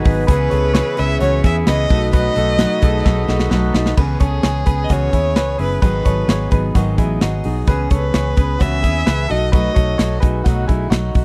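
A rich, smooth violin carries the melody with vibrato and a slapback echo in this bittersweet, restless stretch of jangly indie pop, cut from a longer piece and recorded dry and close in a 1970s studio style. Beneath it, picked steel-string acoustic guitar and twangy, tremolo-laden clean electric guitar arpeggios ride over an up-front drum kit and a dark, punchy, foam-muted fingered bass. A ringing vibraphone and a buzzy, spring-reverbed combo organ sit in the background until a drum fill closes the opening passage at 4.0 seconds.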